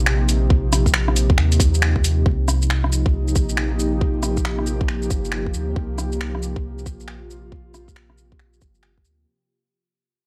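A tight, up-front electronic kick drives this melancholic, wistful future garage fragment, entering at 0.5 s with a small-room ambience and a layered, produced punch. Around it, a garage kit of finger snaps, hi-hat, rim click and shaker shares that close room sound, set to a swung 137 BPM in 4/4 and C minor, tuned slightly sharp to A4 = 443 Hz. Underneath, a deep, round dub sub bass with a fast attack holds sustained low notes, pumping against the sidechain. An airy, breathy pad spreads soft, detuned chords across the middle register, its slow attack, long release and chorus giving a full-bodied haze with a ring-modulated edge, and it also breathes with sidechain pumping. The harmony moves from Eb to Cm7 at 2.3 s, where the music also begins a fade-out through to the end. The whole cut is dry and gritty, with vinyl crackle lending a worn, nostalgic surface to this piece lifted from a longer track.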